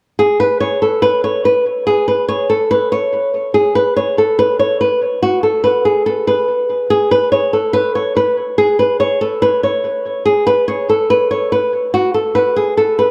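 Brooding and menacing, this short cut from a longer hip hop piece moves with a heavy half-time feel. A lone fingerpicked flamenco guitar, dark in tone and placed up front, carries the whole passage from 0.2 to 13.1 seconds, staying between F#4 and C#5. Its lines are wrapped in tape echo, and a moderate spring reverb gives the echo-heavy mix a lingering, shadowy space.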